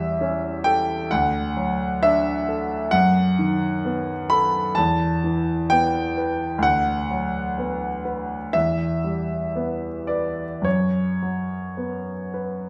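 A grand piano opens alone at 0.0 s, warm and up front with long sustain, playing a yearning, mournful romantic nocturne in B minor that spans D2 to B5. The tempo drifts with rubato between 52 and 67 BPM in 4/4, as the harmony moves from A7/E through D, B7/F#, Em and Bm/D before arriving on F#sus4 at 10.6 s. A wet recital-hall reverb with a 1.5-second decay surrounds the instrument in this short excerpt from a longer piece.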